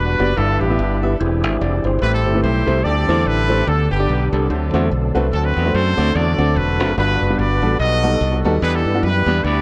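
A clear, punchy horn section carries the melody up front in this uptempo gospel excerpt, its smooth top trailed by tape echo as it ranges from B3 to D#5. Beneath it, a bright, direct fingered electric bass sits close and prominent, anchoring the 145 BPM groove in 4/4 with a swung eighth-note feel. A boxy grand piano with long sustain enters at 0.2 seconds to fill out the accompaniment, while a percussive tonewheel organ holds sustained chords in the background, lightly overdriven and colored by chorus vibrato and a slow rotary speaker. The harmony moves through rich changes such as Em7/G, E7alt, D9sus4 and B7b13 before settling on Em7 at 8.6 seconds. Light reverb and studio ambience frame the soulful, uplifting performance.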